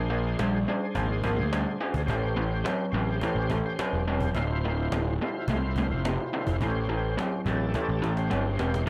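Blues rock power trio with a southern rock lean, this heavy, brooding 106 BPM excerpt sets a double-tracked, lo-fi garage guitar riff and a punchy, fuzz-driven picked bass up front over thick, gritty tonewheel organ chords turning through a slow rotary speaker and chorus vibrato, while a woody cajon with faint snares enters at 0.4 seconds and plays a fill from 7.7 seconds over a Bb7, A7#9, Dm7, A7#9 progression in light reverb.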